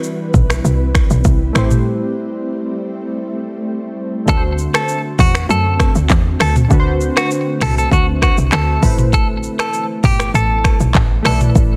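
A straight 4/4 afrobeats groove at 99 BPM drives this hypnotic, smooth excerpt. An up-front electronic kit of deep kick, smooth hats, finger snaps, handclaps, rim clicks, shaker and toms, with soft clipping on the snare, sits over a punchy, woody log drum bass that enters at 0.3 seconds. Round, detuned analog keys with chorus play over an ethereal pad, airy and full-bodied under ensemble chorus and built-in reverb, that sustains chords moving from Cmaj7 to Am7, D7 and Amadd9, with a break at 1.9 seconds. At 4.3 seconds a clean, hollow-body electric guitar takes the melody with vibrato and delay, set in a dense, heavily limited, dry modern master.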